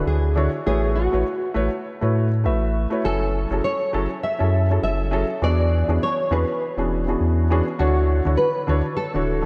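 A thumb-plucked, full-bodied nylon-string guitar carries the melody through this relaxed, warm sunset chillout excerpt in A major at 101 BPM, its sound shaded with ensemble chorus and analog delay over a lightly swung 16th-note feel. Up front, a mellow, worn grand piano with audible action noise and its own analog delay shares space with a deep, round sine sub bass, moving through Dmaj9, A69, F#m9 and E13 before returning to Dmaj9. A lush hall reverb of 2.5 seconds soaks the dreamy mix, which keeps a soft, rolled-off top end.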